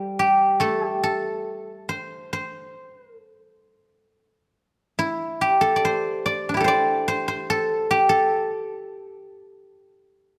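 A silvery, ringing guzheng played with fingerpicks sits up front as the sole voice in this elegant, contemplative Chinese traditional solo, unfolding in a free rubato around 66-74 BPM in 4/4 across a range from G3 to D5 with light reverb, in a brief 10-second passage cut from a longer piece.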